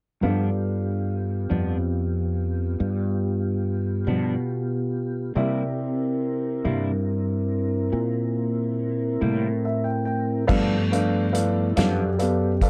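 A soulful, gritty slow blues in 12/8 opens with a dark, clean semi-hollow electric guitar colored by harmonic tremolo, a mellow, flute-like tonewheel organ holding sustained chords through chorus vibrato and a slow rotary speaker, a growly fretless bass with analog chorus, and a warm grand piano, moving from G7 to C7. The piano adds a fill at 9.2 seconds, and at 10.5 seconds a vintage drum kit enters with a punchy kick and dark cymbals in a small, pumping room as the organ takes a solo over a return to G7. The fragment, cut from a longer piece, sits in a moderate club ambience with a dark, warm production.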